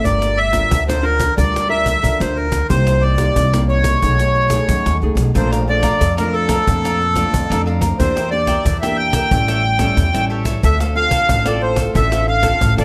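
Lively and bittersweet, this short cut from a longer piece blends samba and choro at 91 BPM in a straight 4/4, set in D minor. A reedy, up-front accordion carries the melody from the start, its tone marked by a slow beating, while a fingerpicked nylon-string guitar with old strings gives full-bodied, classical accompaniment underneath. An upright bass played pizzicato adds a thumpy, woody pulse, and a snappy cajon with snares keeps time with the feel of a live room. The harmony moves from Gm7 and Cm7 through B13 to Bbmaj7, and at 5.3 seconds a crisp, picked cavaquinho joins quietly in the background as the progression continues through Em7b5 and A7 to settle on Dm7. Light reverb gives the ensemble a sense of shared space.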